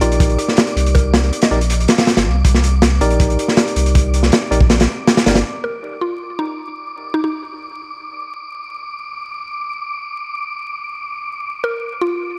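A gritty, crackling cut from a longer dark, frenetic drum and bass and jungle piece in C minor at 160 BPM, where a crunchy, punchy breakbeat kit, a deep, thick, tube-saturated sub bass and bright tine electric piano stabs with 12-bit sampler grit and dub echo ride a Cm7 until 5.4 seconds, while a woody, round, mallet-like synth pluck with chorus, phaser and dub echo carries the melody in short bursts and an airy, breathy, wind-like tuned noise texture sustains throughout to 12.4 seconds.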